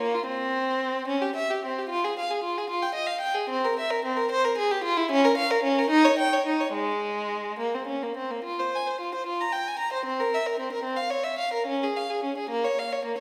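Classical, a baroque-style suite movement for a single bowed violin, solemn and flowing in 6/8 with free, rubato timing. The violin is clear and focused, sitting up front with expressive vibrato across a range from Ab3 to Bb5. A reverberant recital hall lends depth to this brief passage, cut from a longer piece, which runs 13.2 seconds.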